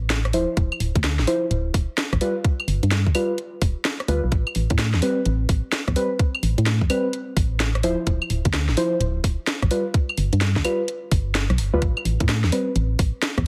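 A hollow, organ-like FM bass opens the excerpt at 0.0 s, with dark, fast-attack, decaying notes pumping under sidechain compression in this moody, soulful two-step UK garage groove at 128 BPM in A minor, swung on the sixteenths. An overdriven garage kit of claves, hi-hat, rim click and cracking snare joins at once, and from 0.3 s soft, nasal, full-bodied chord stabs with chorus and tape echo cycle through Dm9, G7 and Am9. A tight, overdriven electronic kick arrives at 0.6 s, and the whole excerpt carries light reverb and a heavily compressed, radio-like sound.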